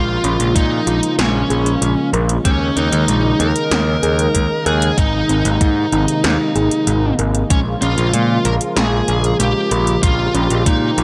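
A smooth, dark overdriven lead guitar sits up front and carries the melody, its picked notes trailed by tape echo across this short synthwave excerpt in Bb dorian at 95 BPM. Beneath it, a growly, bright overdriven picked electric bass drives the low end with sidechain pumping, while a soft, detuned sawtooth analog pad holds sustained chords in the background, breathing with its own chorus and pumping. A very quiet, tine-like FM pluck spins mellow arpeggios with a fast attack and short decay. The 80s electronic pad drums arrive at 0.2 seconds with a gated snare and metallic hats, and a thumpy, sampler-style kick joins at 0.6 seconds, both carrying a tape-tinged character. The chords move from Bbm7 through Eb7sus4 and Abadd9 back to Bbm7 under light reverb, giving the piece a nostalgic yet driving feel.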